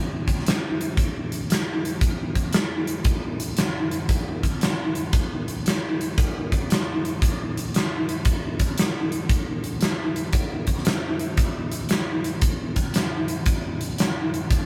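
A live-in-one-room sound with light reverb frames a huge arena drum kit that sits up front, its acoustic hall tone and pumping room ambience giving this short rock excerpt a driving, swaggering mood. Entering at 0.3 seconds and playing through to 14.7 seconds, the hi-hat, punchy kick and fat snare carry a 115 BPM groove in 4/4 with a 66% swing on the eighth notes.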